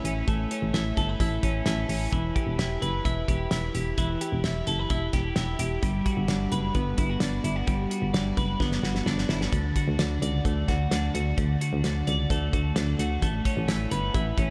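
Clean, twangy twelve-string electric guitar arpeggios with tape echo open this bright, breezy jangly indie pop excerpt together with a punchy, round FM bass and a cloth-damped, thuddy acoustic drum kit with a fat snare and tight kick, all three up front in light reverb as the chords move from Aadd9 through Em, Gmaj7 and D back to Aadd9, with a drum fill from 8.6 to 9.5 seconds.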